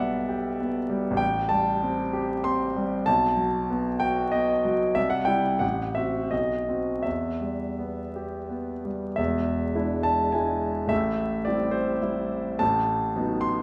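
A concert grand piano, intimate and up front with deep bass, long sustain and audible action noise, plays a brooding, bittersweet romantic character piece in a rubato triple metre, its moderate recital-hall reverb and vinyl crackle framing a short cut from a longer work whose opening passage settles on E minor at 7.0 seconds before a new section begins at 9.2 seconds.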